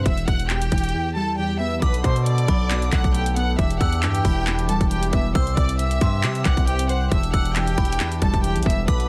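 An overdriven trap drum kit with a hard-clipped kick, bright hi-hats and handclaps hits up front in this brooding, half-time hip hop excerpt, over a heavy, saturated 808-style bass with a noisy, distorted edge and warbling, detuned lo-fi synth keys. A lush studio violin section carries the melody with expressive vibrato and a smooth top. From 1.8 seconds a delicate, tinkling synth bell with tape echo sits in the background while a reedy, mellow accordion holds sustained chords, all in a dry, dense and heavily limited mix.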